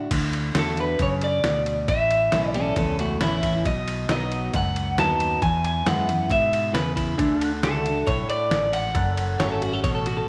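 Honky-tonk and classic country with a nostalgic, sunny glow at 136 BPM, where a twangy, bright lead electric guitar through a small old amp carries the melody with subtle chorus over a full-bodied jumbo acoustic guitar, a round fingered bass and a gritty, pitched-down sampler-style drum kit with a thumpy kick, while a slightly broken-up second electric guitar with tape echo appears at 2.5 s and returns at 6.7 s, and a very quiet, clean pedal steel adds sustained chords from 7.2 s, all set in a lush echo-chamber reverb.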